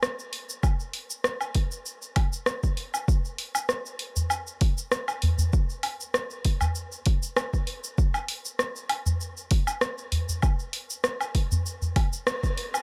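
A lightly reverberant sound frames this earthy, mystical downtempo excerpt at 98 BPM in 4/4, with a gentle 16th-note swing. A deep house drum kit of dark hi-hats, rim click, shaker and woodblock sits up front from the start, joined at 0.6 seconds by a punchy, layered electronic kick, both carrying a small-room character. A small, acoustic udu enters close and up front at 4.2 seconds, and the parts hit a shared accent at 12.3 seconds before the clip ends.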